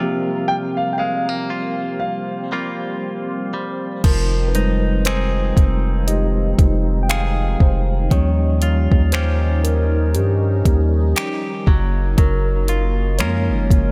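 Contemporary R&B in F minor at a slow 59 BPM with a swung sixteenth feel, this late-night, longing excerpt opens on a mellow tine electric piano, a smooth, detuned sawtooth pad with chorus, and bright, twangy clean electric guitar arpeggios. A natural-toned grand piano sings a brief high melody from 0.5 to 3.5 seconds. At 4.0 seconds a deep, sine-like 808 bass and an up-front electronic drum kit with soft kick, hi-hat, finger snaps and crash cymbal arrive as the electric piano takes a solo over chords moving from Fm7 through Eb9 to Gbmaj7, with tape echo on the guitar and grand piano and a digital ambience framing the sound.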